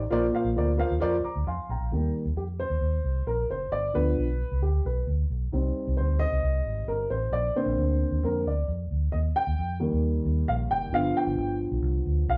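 A dark, woody upright piano leads this joyful, danceable slice of uptempo 1960s-style soul, cut from a longer piece and moving at 133 BPM in a straight 4/4 in Eb major. After a brief opening passage, the piano plays a fill at 1.0 seconds and then takes a solo from 1.9 seconds to the end at 12.4 seconds, its boxy, mellow tone ringing with long sustain. Beneath it, a vintage fingered electric bass plays throughout, foam-muted and amped, with a round, punchy low end. Both instruments sit up front in the mix. The harmony cycles through Bbadd9, Eb, G7 and Cm before returning to Bbadd9, Eb and G7. The band plays live in one room, and a wet studio reverb gives the sound a short, lively ambience.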